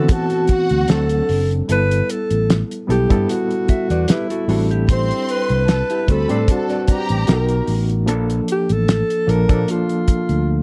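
A warm alto saxophone carries the melody with scooped notes and light vibrato over a barky, reedy electric piano with fast tremolo and a touch of overdrive, while a punchy fingered bass sits up front and a cloth-damped drum kit brings a fat snare, tight kick and hi-hat with a rolled-off top. This smooth, silky slice of lush 1970s-style soul moves at a relaxed 75 BPM in A dorian with a gentle sixteenth-note swing, and a distant bowed violin section adds an expressive second line until about 7.7 seconds. A dark, clean electric guitar plays a fingered riff from 3.7 to 7.3 seconds, all captured in a dry, close studio sound with a small room reverb.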